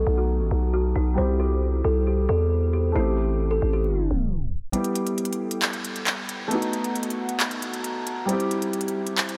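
A dreamy mix soaked in a huge ambient reverb opens this brooding, melancholic fragment of half-time trap hip hop, cut from a longer piece at 135 BPM in E harmonic minor. A woody, hollow kalimba carries the melody through a low-pass filter and a diffuse ambient delay, while a dark, mellow concert grand piano, boxy and treated with analog chorus and its own low-pass filter, plays accompaniment throughout. A growling, buzzy 808-style bass with a fast attack sits up front beneath them, moving through B7, C and Am7. A tape stop from 3.8 seconds ends the opening passage, and at 4.7 seconds the kalimba and bass drop out for a break. There the piano continues over Em, B7 and C while an electronic trap kit enters with crisp hi-hats and handclaps, running to 9.4 seconds.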